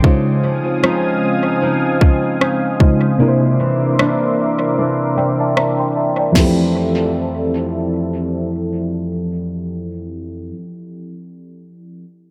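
Light reverb and heavy echo give this dreamy, tender contemporary R&B excerpt a soft, hazy space, with a filter sweep running through its opening 6.4 seconds. At a relaxed 76 BPM in 4/4 with a swung sixteenth-note feel in F major, it moves from Dbmaj9 to C9 and settles on Fmaj7. Up front, a full-bodied FM electric piano with tremolo and a faint noise layer plays dark, decaying accompaniment through delay, while a bright nylon-string guitar fingerpicks classical-style arpeggios beside it. Underneath, a thick, detuned sawtooth unison pad holds slow-blooming sustained chords with chorus. An electronic trap kit, also up front, adds an overdriven, hard-clipped kick, a sharp snare, rim clicks and crash cymbal through echo before dropping out at 6.6 seconds. The pad and guitar then drop out at 10.3 and 10.6 seconds, leaving the electric piano alone until the excerpt ends at 12.0 seconds.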